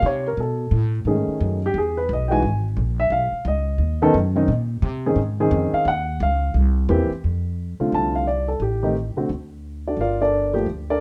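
A dark baby grand piano leads this swinging, relaxed jazz excerpt, carrying the melody between D3 and A5 with a mellow, intimate tone, a short sustain and audible action noise. It takes a solo over the opening 7.2 seconds, moving through rich harmony such as Cb13, Emaj7 and Bbm11 before arriving on F6 as the second section begins. An acoustic upright bass plays pizzicato underneath from start to finish, its steel strings giving a woody, thumpy sound from G1 to C3. The piano sounds natural, and both instruments sit up front in a moderate studio reverb while the eighth notes swing easily in 4/4. Near the close the chords briefly drop out before settling on Gm9, as this passage cut from a longer piece comes to an end.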